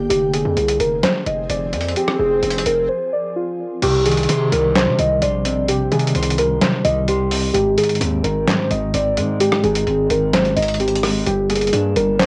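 Hip hop in a trap vein at 129 BPM with a half-time feel in C minor, this hard-hitting, menacing excerpt opens on a break where muted, felt-like synth keys carry a dark melody through chorus, phaser and tape echo over a distorted, saturated 808-style bass, gritty overdriven sampler-style drums up front with a medium-tuned snare, handclaps, rim clicks and hi-hat, and an ethereal, airy pad that drops out at 3.8 seconds, while a background electronic swell enters at 1.5 seconds. From 3.8 seconds a clean, fingered electric guitar adds mellow accompaniment through harmonic tremolo as the chords move from Cm to Ab to Gm, and the pad returns at 11.3 seconds. The whole has the lightly reverberant character of a home cassette recording.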